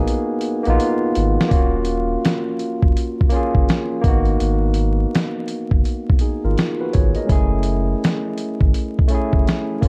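Nostalgic and hazy, this lo-fi hip hop excerpt moves at 83 BPM in 4/4 with a 65% swing on the sixteenths, tuned slightly low to A4 = 439 Hz. A barky tine electric piano sits up front, bright and clean through a combo amp, voicing minor seventh chords that move from Abm7 to Ebm7 at 1.5 seconds and later to Gbm7. Underneath, a round sine sub bass holds deep, mellow notes with a fast attack and long sustain. The dusty soul sampler-style drum kit enters at 0.1 seconds with a fill of hi-hat, kick and snare, its sound gritty, compressed and tape-warm, with a thumpy kick and a fat snare placed up front. Light reverb and digital ambience surround a dark production dusted with vinyl crackle, and the clip is cut from a longer piece.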